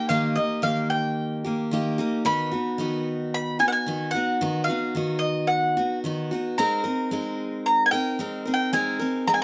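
Folk at 111 BPM in a straight 4/4, this nostalgic passage from a longer piece pairs a bright, picked, double-strung bowl-back mandolin carrying the melody with a full-bodied picked dreadnought steel-string acoustic guitar in accompaniment, both sitting up front for the full 9.4 seconds as the harmony moves from Eb through B/D# to Abadd9, captured by close, detailed microphones with light reverb and tuned to A4 = 435 Hz.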